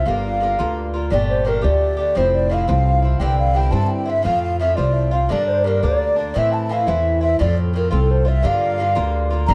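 Celtic folk in the form of a spirited, wild jig, this short cut from a longer piece moves at 114 BPM in 6/8 with a straight feel, set in G dorian. A hollow wooden flute carries the melody with an airy, straight tone and crisp attack, its highs lifted, while a baroque flute sits in the background on a second line, close-miked and expressive with a pure vibrato. Beneath them, an Irish bouzouki supplies picked accompaniment, its double strings giving a metallic edge, and an upright bass stands up front with woody pizzicato on steel strings. All four parts play throughout the 9.5 seconds, over a progression that opens on Gm7 and travels through Fmaj7, Cadd9 and Am before settling back on Gm7. Moderate studio reverb and a dark production frame the ensemble.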